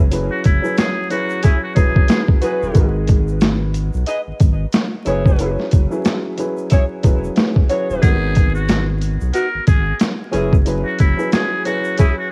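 Reflective and gritty, this boom-bap hip-hop excerpt sets a thumpy, overdriven sampler drum kit up front over a deep saturated sub bass and a dark, woody upright piano with audible action noise, while a buzzy metal-muted trumpet with scooped notes plays the melody from 0.3 to 2.3 seconds and again from 8.0, a tight, close-miked saxophone section adds clear stabs, a grainy egg shaker sits in the background, and the whole piece carries a home-cassette sound, vinyl crackle and a small room's reverb.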